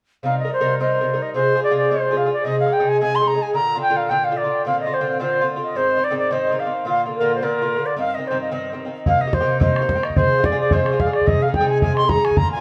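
Wild and driving, this Celtic reel excerpt races along at 218 BPM in C minor with a light swing. A bright, reedy wooden flute with gentle vibrato and a soft attack carries the melody through a tape echo, while an Irish bouzouki picks mellow, metallic double-string accompaniment over chords moving from Cm7 through Fm, Ab and Bb. A tight, damped bodhran joins at 9.1 seconds, and the whole performance sits in a wet studio room heard from further back.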